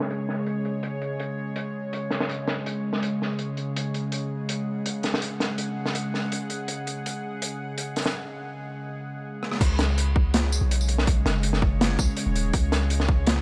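A string-like drone and a crunchy breakbeat kit open this dark, spacious half-time drum and bass excerpt together. The drone holds sustained chords with a slow attack, vibrato, its own reverb and a pumping sidechain, giving a tense, sawtooth-edged, wave-folded texture. The acoustic-sounding kit of snare, rim clicks, hi-hat, tambourine and crash carries a gritty, saturated character with a rolled-off top, and a filter sweep runs over the drums through the opening stretch. After a break at 8.1 seconds and a drum fill, the drop arrives at 9.6 seconds, bringing in a deep, sine-like 808-style bass with long decaying notes alongside a hard-clipped, overdriven electronic kick. The mix sits in a small room with light reverb, and the parts are kept up front.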